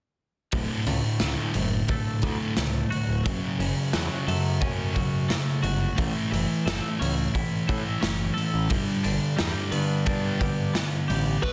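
Quiet-loud alternative rock with an anthemic, cathartic mood, built on a thick fuzz guitar riff up front, bright, twangy arpeggios from a phased twelve-string electric guitar, a growling overdriven picked bass and a raw garage drum kit with a punchy kick and dark cymbals in a small, pumping room, moving through D, F#m, A and G before a smooth overdriven lead guitar cuts in at 11.4 seconds, all pressed into a dense, heavily limited modern master.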